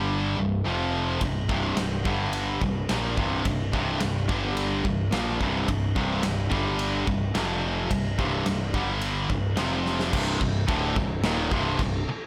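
A blown-out, overdriven heavy metal passage opens with two picked electric guitars and a growling picked bass all striking at once. The high-gain distorted guitar sits up front while the overdriven guitar fills in behind it, both bright and working through a riff built on power chords around C, F and G. The bass, direct and amped with its own overdrive, anchors the low end. At 1.2 seconds a big acoustic rock kit enters with a punchy, softly clipped kick, a medium-tuned snare, and crash and ride cymbals ringing in a bright stone room. Running at a steady 108 BPM in a straight 4/4, the heavy, relentless groove carries on to a drum fill at 9.9 seconds and then drops into a half-time section at 10.1 seconds over a C minor chord, where this cut from a longer piece ends.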